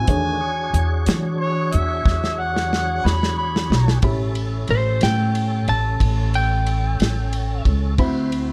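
A mellow harmonica with a soft attack, scooped notes and light vibrato opens this swaggering, laid-back slow blues in 12/8, its overdriven tone up front through the opening solo to 4.0 seconds as a drum fill rolls under the end of the phrase. A slightly broken-up, picked and compressed lead guitar with plate reverb then takes the melody from 4.7 seconds. Beneath them a worn, slightly detuned upright piano, a full tonewheel organ with chorus vibrato and slow rotary speaker, a woody, thumpy pizzicato upright bass and a dry soul drum kit with a tight kick and dark cymbals settle into a warm production with light reverb, in a passage cut from a longer piece.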